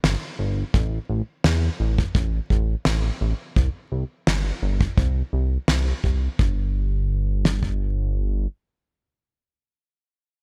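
Dreamy and romantic, this synthwave passage from a longer piece moves at a straight 85 BPM in 4/4, tuned to A4 = 439 Hz, with a glossy, detuned chorused synth bass carrying the low end from G1 to E2 with plucky, sustained pulse-width and ring-modulated tones. An up-front acoustic snare drum, dark and fat with a rolled-off top, plays until 5.8 s, while a damped 70s drum kit with a tight kick and smooth snare joins at 0.7 s. The dry, close sound has little reverb, and the bass rings on until 8.5 s as the music moves into a new section.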